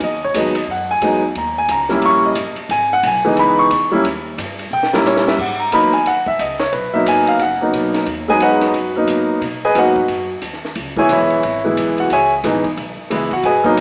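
A warm grand piano leads from the first moment of this swinging, late-night jazz piano trio excerpt, soloing up front in G# minor at a brisk 179 BPM, its long sustain and audible action noise giving it an intimate, natural presence over chords that move from Emaj7 through D#7b9 to G#m. Beneath it, a woody, dark upright bass plays pizzicato and a compact cocktail drum kit, dry with dark cymbals, a high-tuned snare and a punchy kick, keeps the swing, adding a fill from 4.7 to 5.4 seconds before the form begins again on G#m7. A moderate recital hall reverb surrounds the trio, heard through a small-speaker sound.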